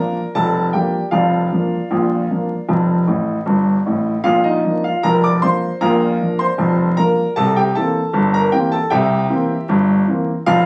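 A clear, woody upright piano plays solo ragtime up front in Bb major, moving at a cheerful, playful 77 BPM in a straight 2/4 across a span from F1 to D6. A short piano fill arrives at 3.1 seconds, and the harmony travels from Bb through F back to Bb before settling on C7 at 7.4 seconds in this brief cut from a longer piece. The sound carries a small-room reverb and club ambience with vinyl crackle, as if captured on a phone in the room.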